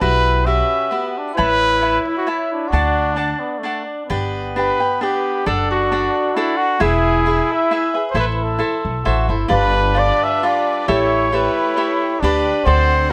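Mexican folk in the mariachi tradition, this proud, festive excerpt moves at 133 BPM in a lilting 3/4 with a light swing, starting in D major before shifting to G major at 4.1 seconds. A mellow, soft-attacked trumpet carries the melody up front in a classical style, its line touched by tape echo, while a darker trumpet with light vibrato plays a second line beneath it. A bright, crisp picked cavaquinho sits forward in the mix as accompaniment, and a woody, thumpy pizzicato upright bass anchors the low end. At 9.5 seconds a smooth, bowed studio violin section enters in the background with sustained chords, adding a lush vibrato cushion under the G7 and A7 harmonies. The whole sits in a moderate small room, giving the ensemble an intimate, close sound as the passage is cut off at 13.1 seconds.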